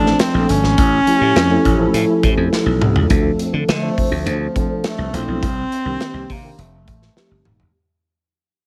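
A clear, up-front bass clarinet carries the melody in jazz style, its solo line shaped with vibrato and scooped notes. This short cut from a longer piece of polished 1980s jazz-funk pop sits in D minor at 103 BPM in a straight 4/4, with an urban, bittersweet mood. Beneath it, a growly slap bass sounds bright and direct, while a mellow tine electric piano plays through its built-in speakers with an ensemble chorus. The acoustic studio drum kit enters at 0.1 s, mid-forward with a medium-tuned snare, a punchy kick, a rolled-off top, hi-hat and toms, and adds drum fills near 2.5 s and at the close. The harmony moves from Dm7 and A7b13 to Cm9 and F9 in a small room, and the music fades out from 3.1 s.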